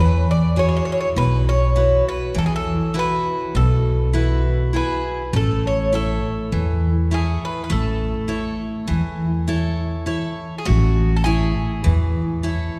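A metallic, double-strung bouzouki carries the melody up front in this peaceful Greek folk fragment in 9/8, over a bright, full-bodied picked jumbo steel-string guitar and a dark, woody pizzicato upright bass, all bathed in the long, wet reverb of a church as the harmony moves from Eadd9 to A at 5.3 seconds.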